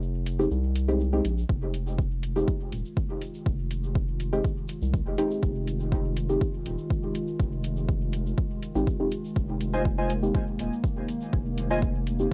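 A deep, nasal chord stab with dub echo, phaser and a filter sweep from 1.5 s leads this meditative, cavernous dub techno excerpt, set over a round, sidechain-pumped analog bass, a punchy kick and metallic hi-hat (both overdriven), and a grainy egg shaker, with a dark, warbling tape-like pad entering at 1.5 s and airy, detuned lo-fi synth keys carrying a brief echoing riff from 9.7 s, all in a dry home cassette recording.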